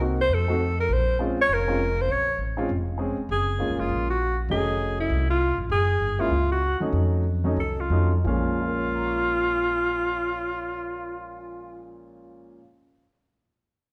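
Swung eighths in 4/4 drive this smoky, late-night fragment of small-group swing and bop, where a clear, up-front alto saxophone solos with vibrato, subtone and scooped notes over an open, warm upright piano and a dark, woody pizzicato upright bass. The trio eases the pace between 5.7 and 8.3 seconds, and the whole is set in a moderate recital-hall reverb.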